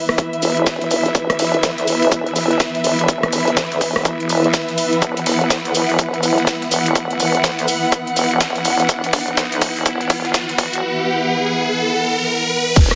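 A tight, up-front electronic kick drives this gritty, aggressive bass house build-up, cut from a longer piece, with a 16th-note swing giving the groove its bounce. Beneath it, a nasal, resonant vowel-sweep wobble bass wobbles with saturation and chorus, pumping against the kick. A lush studio string section holds sustained chords with vibrato and portamento, sounding both expressive and distant through a low-pass filter, while an ethereal, detuned pad sits in the background with ensemble chorus and its own reverb. Two drum kits layer together, one a house kit of crash cymbal, hats and rim click with a tape-warm sheen, the other a dusty, sampler-style kit of compressed hi-hat, shaker and fat snare tucked behind. A drum fill runs from 5.0 to 10.8 seconds, and an electronic riser enters at 7.2 seconds to push the build, with a grainy shekere barely audible at the very end, all set in a moderate, lush hall reverb.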